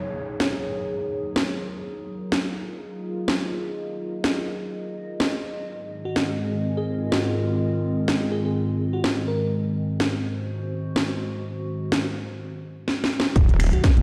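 A stone-walled room and a lush hall reverb of 2.2 seconds wrap this gritty, aggressive bass house fragment, cut from a longer piece, at 125 BPM in Eb dorian with a swung sixteenth feel. A downlifter opens it as a bright, resonant sawtooth pad holds sustained chords under a filter sweep that runs until 13.4 seconds, while a nostalgic, lo-fi tape-like pad warbles alongside it, both pumping against the sidechain. From 0.4 seconds a tape-warm house kit sits up front with finger snaps, hi-hat and a cracking snare, building into a drum fill just before the drop. A sparkling, bell-like FM electric piano carries a short melody from 6.1 to 9.7 seconds over the Ab chord that follows Ebm, its chorus and delay adding shimmer. At 13.4 seconds an impact lands with a punchy electronic kick and a heavy, saturated wobble bass on a low Eb, loud and up front as the chords return to Ebm.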